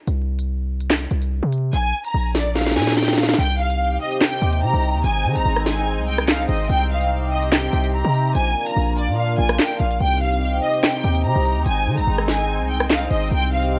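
A punchy, heavy 808-style bass and a sharp, crisp electronic drill kit with handclaps, hi-hat, rim click and snare hit hard from the start of this cold, menacing half-time drill excerpt at 145 BPM in C minor; a bright, lush bowed violin section with vibrato enters at 1.7 seconds through a low-pass filter and digital delay, and an evolving, resonant sawtooth pad with chorus joins at 3.4 seconds, all coloured by worn, warbling cassette tape, vinyl crackle and drifting pitch in a dry mix.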